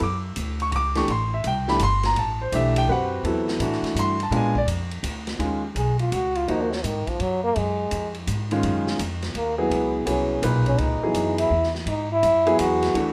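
This swings in a lilting 3/4 at 167 BPM, a cool, spiritual piece of modal jazz cut from a longer performance that settles into Eb phrygian from 5.4 s. An up-front concert grand piano with a deep bass and natural tone comps throughout, moving from a rootless Bmadd9 through Am11 and A#7b9 before sliding to Ebm11 and Dbm11. Beneath it, a woody, dark pizzicato upright bass sits close, while a distant, roomy big-band kit keeps time lower in the mix with dark cymbals on ride and hi-hat, a medium-tuned snare and a boomy kick. At 5.8 s a trombone in a cup mute steps forward for a solo, its soft, veiled voice carrying vibrato, scooped notes and a smooth top across a range from Eb3 to Ab4. Light reverb gives the ensemble a gentle sense of space.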